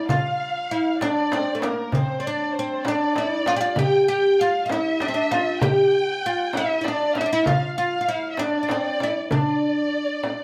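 Heard in a wet, live room with a short half-second tail, this brief cut from a longer Arabic maqam piece sounds like an ensemble playing together in one space. The mood is soulful and hypnotic, moving at 65 BPM in a straight 6/8 in D maqam bayati, tuned to A4 = 444 Hz. Up front, a woody, fretless oud carries the melody with plectrum-plucked double strings between A3 and G4. A dark, lush bowed violin section also sits up front as a second line from Bb4 to G5, its soft attack, vibrato and portamento given an expressive edge and an analog delay. Entering at 0.1 s, a crisp metal-shelled darbuka played with soft hands and a small, bright frame drum supply the percussion until the close at 10.4 s.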